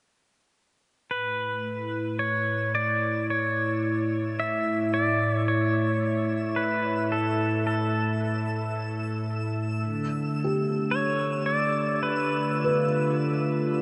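At a slow 55 BPM in a straight 4/4, this luminous ambient piece in A mixolydian drifts along, cut from a longer work. From 1.1 seconds a bright, clean electric pedal steel guitar carries the melody up front, its compressed, fingerpicked slide lines rounded by tape echo. Beneath it, a smooth, detuned analog pad holds sustained chords with chorus and a filter sweep, its vintage sawtooth-and-sine tone warbling softly. A faint twinkling granular texture fades in high above, adding a sparkling octave-up shimmer with its own reverb, while the harmony moves from A to D minor at 9.8 seconds. At 10.4 seconds a mellow, felt-muted upright piano enters with intimate arpeggios, also touched by tape echo, all set within a huge, wet reverb whose top end is gently darkened.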